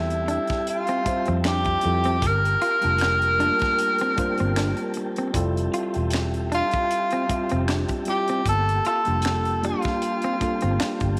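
A clear tenor saxophone leads this sultry, smooth neo-soul and R&B fragment, its soft-attacked, scooped notes and gentle vibrato sounding distant and roomy yet sitting up front, with a slapback echo trailing the jazz-style line. Underneath, a worn, slightly out-of-tune tine electric piano supplies mellow accompaniment, while a flute-like tonewheel organ holds soft sustained chords in the background, its key click and slow rotary speaker adding gentle motion. A dark, foam-muted fingered electric bass gives a round, punchy low end, and a tight funk drum kit with finger snaps, hi-hat, a high-tuned snare and a tight kick enters at 0.1 seconds from a small room. A compressed semi-hollow electric guitar plays a quiet second line from 0.3 to 11.0 seconds, coloured by spring reverb and slapback echo. At 77 BPM in 4/4 with a lightly swung sixteenth feel, the music sways in G dorian between Fmaj9 and Gm9, wrapped in light reverb and studio ambience across this 11.2-second cut from a longer piece.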